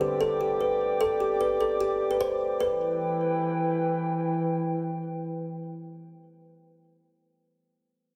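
Dark and melancholic, this short half-time hip hop fragment in E minor moves at 150 BPM, with a woody, hollow kalimba carrying the melody up front through delay until 3.8 seconds while a mellow, deep-toned concert grand piano accompanies quietly beneath it until 2.6 seconds. A warbling, nostalgic tape-like pad with detuned, wave-folded edges sustains chords through chorus and its own reverb to 6.6 seconds, shifting from Csus2 to Em at 2.6 seconds. Light digital ambience surrounds a dense, heavily limited modern master.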